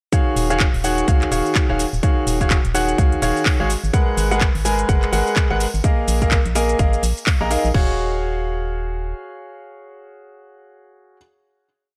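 This short, complete piano house piece is energetic and bittersweet, swinging its sixteenths over a steady 4/4 drop. A bright baby grand piano sits up front, playing close-voiced, dotted-rhythm chords with audible action noise, an intimate tone, analog delay and sidechain pumping. A punchy, tape-warm electronic kick drives a four-on-the-floor beat alongside a house kit of metallic hats, shaker, handclaps and crash, both re-recorded in a small room. Entering at 0.4 seconds, a hollow, organ-like FM bass with a fast attack and a decaying tone plays a dark dotted rhythm and pumps with the sidechain. The drums stop at 7.9 seconds as the harmony returns to its opening chord, and the piano carries that final chord to the close, all set in a dry, gritty sound with digital ambience.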